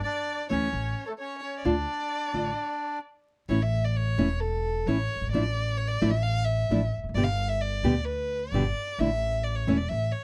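Closely miked, dry and detailed with a faint vinyl crackle, this melancholic, sultry tango fragment moves in a rubato 4/4 around 131 BPM, as a reedy, bright bandoneon carries the melody until 3.0 seconds over fingerpicked nylon-string guitar with audible finger squeak and a woody, growly pizzicato upright bass, while a single bowed violin, warm with vibrato, portamento and a soft attack, shifts from second line to an expressive solo at 3.5 seconds.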